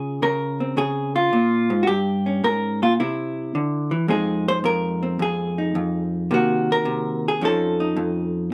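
Relaxed and swinging, this short solo jazz passage, cut from a longer piece, moves at 108 BPM in 4/4 with a swing feel on the eighth notes. A single vintage hollow-body electric jazz guitar carries everything alone from 0.0 to 8.5 seconds, picked with a dark, clean tone that is compressed and placed up front. Its range stretches from F2 to C5, and the instrument is tuned slightly sharp to A4 = 441 Hz. The harmony opens on Dbmaj7, passes through Gdim and C, and then shifts at 4.1 seconds into a second phrase built on Fm7, Cm7b5 and F7b13. A moderate studio ambience gives the guitar a short, natural room tail.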